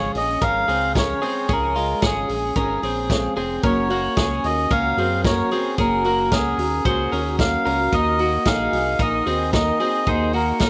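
A straight 4/4 pulse at 112 BPM carries this breezy, bright stretch of jangly indie pop, cut from a longer piece, as it moves from Db to Gb to Ebm. A reedy, breathy melodica leads up front with slapback echo, over a clean, compressed twelve-string electric guitar playing arpeggios through spring reverb and slapback, and a boxy, shimmering, octave-doubled picked twelve-string acoustic guitar giving accompaniment with its own slapback. Underneath, a round, deep analog bass and a vintage drum kit entering at 0.1 s, with punchy kick and a rolled-off top, sit in a dry, outdoor sound.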